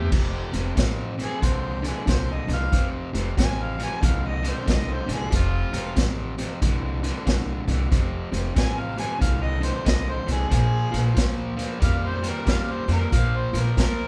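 An electric blues shuffle cut from a longer piece, gritty and soulful, with a swung feel and light reverb that puts the band together in one room. A crunchy, bright overdriven guitar riff and a woody, growly upright bass drive it from the start, while a raw garage drum kit sits up front with a punchy kick, dark cymbals and a saturated, pumping small-room sound. From 1.2 seconds a mellow, distant harmonica with vibrato and overdrive takes a jazz-style solo over the F chord, which moves to Bb at 10.5 seconds.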